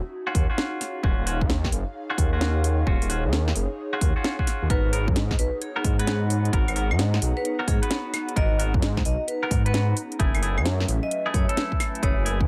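A soft, breathy pad with chorus and sidechain pumping opens this soulful, late-night two-step garage excerpt. It is quickly joined by a punchy electronic kick, a tape-warm house kit with cracking snare, metallic hats and claves, a deep, rumbling detuned saw bass up front, and clean, twangy electric guitar stabs trailing dub echo. At 4.7 seconds a ringing vibraphone melody with slow motor vibrato enters, also carried on dub echo, and from 5.6 seconds a very quiet ethereal pad adds sustained chords with ensemble chorus and phaser, all over a swung groove of minor-ninth chords in light reverb.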